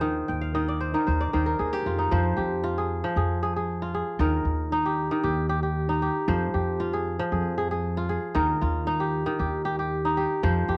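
West African traditional music with a reflective, flowing mood moves at 115 BPM in a straight 4/4 in this short cut from a longer piece. The kora sits up front, fingerpicking bright, ringing arpeggios that span from Eb3 up to G5 with a crisp attack, and it opens with a fill from 0.3 to 2.1 seconds. Beneath it, a pizzicato upright bass with steel strings gives a woody, dark low end, staying close between Eb2 and F2 throughout. The harmony alternates between Eb and Fm roughly every two seconds, with the first section giving way to the second at 2.1 seconds. A light reverb surrounds the acoustic instruments, and the piece is a home recording on cassette.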